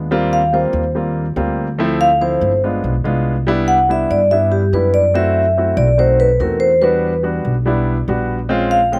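Jazz at a sunny, danceable 143 BPM, this straight-feel fragment from a longer piece features a ringing, metallic vibraphone played with medium mallets and slow motor vibrato that carries the solo melody from 0.3 seconds above a polished grand piano and a woody pizzicato upright bass on steel strings, with a touch of slapback echo on the vibraphone and piano, a dry, close outdoor sound, and chords that move from Eb69 through Cmaj9 to Em7.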